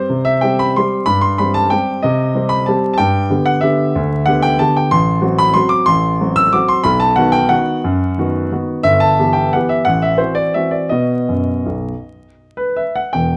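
Close, detailed microphones and a light reverb give this recording a detailed, polished sound, with vinyl crackle beneath. A solo grand piano plays a classical waltz in G major and 3/4 time, its tone warm, present and up front. The tempo moves freely between 155 and 204 BPM with a rubato feel that suits the wistful, nostalgic mood. The piano spans a broad range from E1 to E6 as the harmony moves from C to G, then through a diminished chord and on to B and E minor before returning to B. The piano sounds until 13.4 seconds in this short passage, which is cut from a longer piece.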